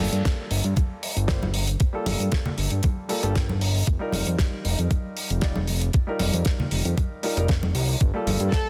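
A lightly swung 16th-note groove at 116 BPM in 4/4 drives this sleek, groovy nu-disco excerpt in G minor, tuned slightly flat to A4 = 436 Hz. A dry, damped 70s kit with a fat snare and hi-hat opens the excerpt, and an overdriven, thumpy electronic kick enters up front at 0.3 seconds, while soft-handed, saturated congas sit in the background. A thick, nasal analog bass with a detuned sawtooth and square-wave edge and a fast attack pumps against the kick alongside a grand piano whose intimate tone carries audible action noise, sidechain pumping and delay. Together they cycle through Gm9 and F9sus4, returning to Gm9 at 8.0 seconds. At 8.5 seconds, a close, bowed chamber violin section touches an A4 with light vibrato and a soft sul tasto attack just before the cut. The mix is dense and heavily limited, with light reverb and small-room ambience.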